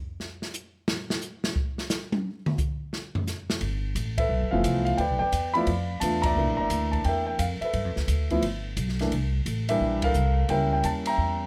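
A jazz piano trio swings at 174 BPM in 4/4, carrying a warm, sophisticated mood through this short cut from a longer piece, tuned a touch sharp of standard pitch. It opens with the drum kit playing alone, an airy, polished small-room sound of dark cymbals, a medium-tuned snare, a boomy kick, hi-hat and toms, until the pizzicato upright bass arrives at 3.6 seconds, woody and thumpy with the bite of steel strings. The concert grand piano joins just after, full and deep in its lower register, taking the melody up front as the harmony moves through rich G13 and C13 chords and a G6/9 before settling on a C#dim7. The whole band hits accents together along the way. A light reverb wraps the trio.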